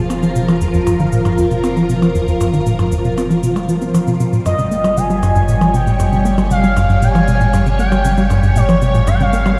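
This hypnotic, cosmic slice of sequencer-driven space music opens at 0.0 seconds with a swirling, vintage string machine holding bright, up-front chords through ensemble chorus and phaser, while a deep, round sine sub bass fades in beneath it. A tight, punchy sequencer bass riff drives the piece at 117 BPM in a straight 4/4, its detuned sawtooth, square and triangle tones plucked by a filter that sweeps across the passage, with subtle chorus and tape echo. Faint overdriven cabasa and electronic percussion blips, re-recorded in a small room, flicker in the background through their own tape echo. The harmony moves from F minor to G diminished at 4.2 seconds, and at 4.5 seconds a smooth, expressive sawtooth lead enters high above, gliding with portamento and vibrato through analog chorus and tape echo. Everything sits in a huge, wet ambient reverb, as if played on a big sound system in a bare stone room, and the clip is cut from a longer piece.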